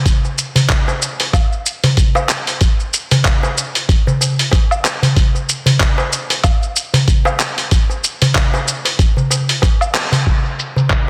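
A thumpy, gritty electronic kick sits up front in this earthy, mystical downtempo excerpt at 94 BPM in 4/4, with a 16th-note swing, re-recorded in a large room alongside a tape-toned, sampler-style soul kit whose handclaps, hi-hat, shaker and woodblock are dulled by low-pass filtering. A crisp, metal-shelled darbuka adds acoustic percussion in a live room from 0.2 to 10.9 seconds. The whole is bathed in a moderate echo-chamber reverb and a dense, heavily limited master, closing on a band accent at 9.9 seconds.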